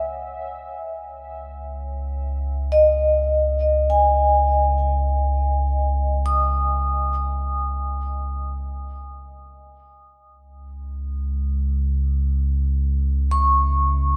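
A mellow, ringing vibraphone played with soft mallets spins arpeggios between C#5 and D#6 through a diffuse ambient delay and medium motor vibrato, while a dark, rumbling drone on C#2 sustains ominously beneath it with its own built-in reverb, both up front in a moderate cathedral reverb across this melancholic, spacious ambient excerpt in free time, tuned to A4 = 435 Hz, moving from C#sus2 at 0.4 seconds to C#5 at 9.8 seconds.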